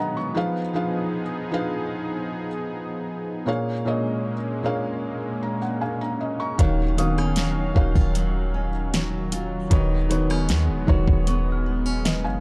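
This contemporary R&B excerpt, cut from a longer piece, has a late-night, sensual mood and a straight, unhurried feel. It opens on a felt-muted upright piano, soft and intimate with audible action noise, sitting up front over a warbling, detuned sawtooth pad that swells in slowly and carries a chorus effect, while the piano adds short fills. At 6.6 seconds the groove arrives: a deep, boomy 808-style bass with a clean sine tone, a fast attack and decaying notes, a smooth electronic drum kit with a soft kick, fat snare, rim click and metallic hats re-recorded in a large room, and a fingerpicked nylon-string guitar playing arpeggios through analog delay, its fresh strings showing finger squeak. From 7.0 seconds a worn celesta with hard felt hammers adds bell-like, slightly out-of-tune sparkle in the background, also through analog delay. The harmony moves through Fm7b5, Bbm7, Ebm9 and Abm11/Eb, and the whole recording is dry and gritty, with the character of hardware and cassette tape.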